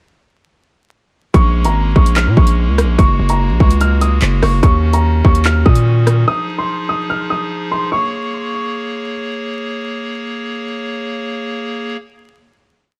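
A half-time drill beat with skipping hats, rim clicks, handclaps and a hard-clipped kick drives this short, ominous hip hop piece, sitting up front with a punchy 808-style bass whose long sub-bass notes follow the kick with pitch slides, and both stop at 6.2 seconds. Above them, a dark, boxy concert grand piano repeats a high looping melody like a sampled phrase through a low-pass filter and digital delay, while a hollow clarinet-reed pipe organ stop, with chiff and tremulant, holds sustained chords. The piano stops at 9.1 seconds and the organ carries the final chord to 12.0 seconds, over a dry bed of vinyl crackle.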